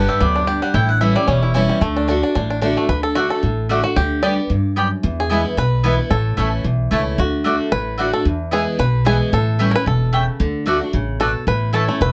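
Bluegrass at a driving, virtuosic 224 BPM in D major with a swung feel, where a bright, double-strung mandolin takes the opening solo before a twangy, fingerpicked banjo leads from 2.9 seconds, over a warm picked acoustic guitar and a growly, thumpy upright bass, all captured up close with light reverb in this short cut from a longer piece.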